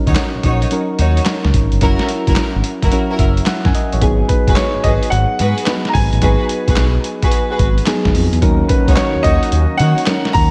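Lightly reverberant, with gritty 12-bit sampler crunch on its thumpy, up-front drums, this bouncy, confident new jack swing excerpt at 109 BPM in G# minor swings its 16ths over kick, snare, hi-hat and handclaps, a dark gliding synth bass, soft, round electric-piano-like synth keys with chorus that add a fill at 2.9 s, and distant, lush string stabs with slapback echo, before a natural baby grand piano takes the melody at 4.3 s and a warm analog pad slips in beneath at 8.4 s.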